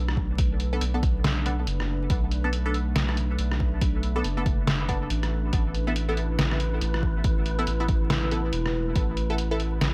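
Cavernous and meditative, this deep dubstep excerpt sits at 140 BPM in B minor with a swung, half-time feel, moving from Bm7 to Asus2 at 5.5 seconds over a bed of vinyl crackle and light reverb. A round, soft sub bass with tube saturation and a muffled, pitched-down sampler-style kit of hi-hat, rim click and snare sit up front, joined by a deep, overdriven electronic kick. A dark, detuned ambient pad with chorus and muted, phaser-tinged chord stabs with dub echo join them, and a breathy, wind-like tuned noise texture drifts in behind them at 5.8 seconds.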